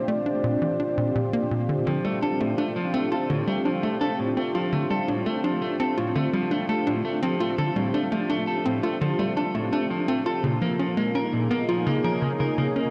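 Luminous and expansive, this excerpt of ambient, sequencer-driven space music moves at 84 BPM in a straight 4/4, drifting from Bb to Dm7 and then Db. A soft, round, octave-layered synth lead with chorus, vibrato and analog delay sits darkly in the background until 1.5 seconds, while a sweeping, detuned, full-bodied pad holds sustained chords and a tight, punchy sawtooth sequencer bass drives a plucked, delayed riff underneath. A clean, picked electric guitar enters up front at 1.9 seconds with delayed arpeggios, and the whole recording is steeped in a huge, wet reverb and the warble and pitch drift of worn cassette tape.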